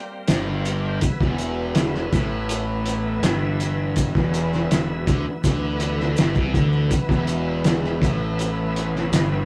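A straight 4/4 feel drives this mysterious, trippy psychedelic rock passage, cut from a longer piece. A bright, shouting tonewheel organ holds sustained chords alone at the start, and fuzz guitar, bass, drums and maracas join at 0.3 seconds. A distorted, double-tracked guitar riff runs through a phaser over a round, overdriven fingered bass placed up front, while the cloth-damped kit thuds with a fat snare, tight kick and hi-hat, muffled and gritty. The organ spins through a slow rotary speaker with chorus vibrato and key click, grainy maracas linger in the background, and light reverb colours the rough rehearsal-room sound.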